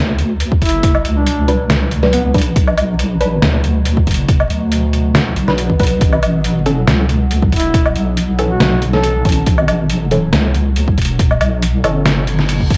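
A dry, gritty hardware sound with vinyl crackle and a light digital ambience frames this heavy, dark deep dubstep piece in B minor, cut from a longer track and moving at 139 BPM with a half-time, lightly swung feel. A deep, soft wobble bass with a chorused, saturated triangle-and-sine tone sits up front from the very start, joined by an overdriven, layered electronic kick and a compressed, pitched-down trip hop drum kit of hi-hat, medium-tuned snare and woodblock that sounds re-recorded in a large room. Behind them, a granular cloud pad holds blurred, evolving chords in the background, while filtered dub chord stabs, detuned sawtooth plucks with a moving notch, phaser and dub echo, drop in from 1.5 seconds. A mellow duduk carries the solo melody in a folk style, its vibrato and scooped notes trailing dub echo in two phrases, the second arriving at 7.5 seconds. The harmony shifts from B minor to A, and a reverse cymbal enters faintly in the background at 12.3 seconds to close the passage.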